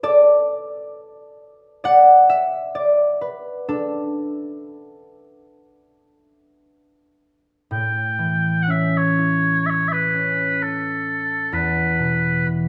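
This Celtic slow air, cut from a longer piece, unfolds in a pastoral, wistful mood at a gentle, rubato pace of roughly 55-67 BPM in 4/4, set in A mixolydian. A concert harp opens alone, its fingerpicked, ringing strings sitting up front and ranging from deep low notes to bright upper tones over a suspended A chord that gives way to a passage free of any set chord. At 7.7 seconds the harp settles onto an A7 and mellow small bagpipes enter up front with the melody, their sweet, continuous tone carrying a vibrato. The pipes carry the solo line above the harp until 12.5 seconds, while the harp moves to an open E chord and rings on to the close. A moderate recital hall reverb surrounds the pair with a sense of space.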